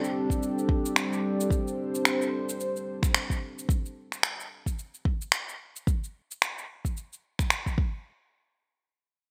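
A bright, 1980s-style digital sheen and a moderate plate reverb give this short cut from a longer organic downtempo piece a polished, roomy finish. A smooth, dark analog pad built from sawtooth and triangle tones with a sub octave sits up front, sustaining a D7sus4/G chord with a slow attack and long release, colored by chorus and sidechain pumping until it stops at 3.7 seconds. Layered electronic shaker and finger snaps are also placed forward, framed by small room ambience and gated reverb, with a light 16th-note swing in 4/4. A deep, produced electronic kick drum enters at 0.3 seconds and carries on until 7.9 seconds, leaving the drums to hold the groove once the pad falls away. The overall mood is earthy and warm.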